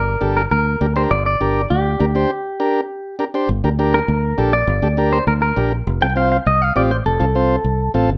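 Latin groove at a brisk 202 BPM in G minor, passionate and danceable, cut from a longer piece. A twangy, compressed clean electric guitar carries the melody up front, colored by spring reverb, slapback echo and plate reverb, while a punchy, foam-muted fingered electric bass holds down the low end and a vintage, mellow combo organ supplies the accompaniment. A break arrives at 2.3 seconds before the second section begins at 3.5 seconds, and the harmony shifts from G minor to F at 5.9 seconds in a lightly reverberant room.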